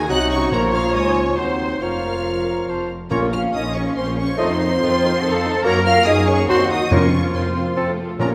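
A quick, stormy classical-period movement for symphony orchestra in Bb minor and triple time at 141 BPM, this urgent passage sets a rich, focused violin melody high above a very quiet second violin line, hushed violas, a smooth cello and clear double bass foundation, and dark, distant French horns holding sustained chords in the background. Around them, an airy flute ensemble, a clear oboe, a soft, faraway clarinet and a mellow bassoon fill in supporting lines, while hard-mallet timpani strike crisply from 0.5 to 3.7 seconds and return at 6.9 seconds. The harmony drives from Ebm and Bbm through F7 and Gb toward an Fsus4 resolving to F, all framed by the ambience of a scoring-stage hall.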